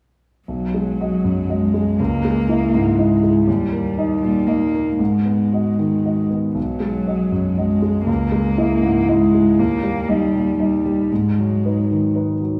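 Longing and reflective, this short neoclassical passage for piano and strings unfolds in a flexible, rubato triple metre, cut from a longer piece. A grand piano carries the accompaniment from 0.5 seconds, its warm, intimate tone slightly boxy, with long sustain and audible action noise placed up front. A single cello enters alongside it as a second line, playing sul tasto with a soft attack, an airy bow and vibrato, its dark, smooth-topped voice sitting close and up front in a low, narrow register. The harmony circles twice through B6, C#madd9, D# and G#m7, giving the music a searching, unresolved pull. A wet recital-hall reverb wraps the pair in church- or concert-hall space, and the cello stops at 12.2 seconds just before the piano ends at 12.6.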